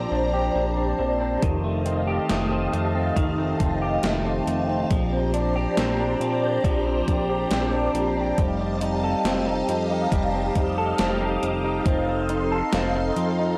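Ethereal and blissful, this dream pop excerpt opens with a swirling, phased string machine holding sustained chords over arpeggios from a clean electric guitar drenched in lush chorus and analog delay, and a glossy chorused synth bass, before a gated 80s digital drum machine with a thumpy kick and overdriven gated-reverb snare enters at 1.4 seconds, while a very quiet, bell-like celesta adds delicate texture above, all caught in a dry, gritty hardware recording with light digital ambience as the harmony drifts between Bb69 and F9 before settling on F7.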